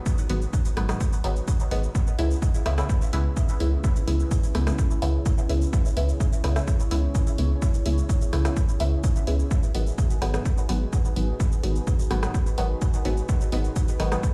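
A punchy, tape-warm kick drives this meditative, nocturnal dub techno cut at 127 BPM in straight 4/4, up front and joined by a quieter analog drum machine tapping cabasa, hi-hat and rim click through dub echo. A round sine sub bass and muted, detuned sawtooth chord stabs enter at 0.3 seconds, the stabs plucked through a filter with chorus, phaser, echo and sidechain pumping, over a dark, moody pad of slow-attack sawtooth and triangle tones sitting in the background. The harmony moves between G#m7 and C#m7 in C# minor, and the whole excerpt sits in the cavernous reverb of a big sound system in a bare room.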